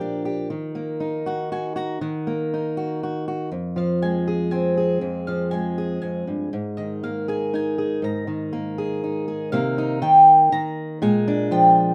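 From the first moment, a round, double-strung mandolin carries the melody over a dark, up-front fingerpicked steel-string acoustic guitar in this peaceful, hopeful folk excerpt at 120 BPM in 3/4, moving through minor and suspended chords before shifting to a new section at 9.5 seconds, all set in a moderate studio ambience.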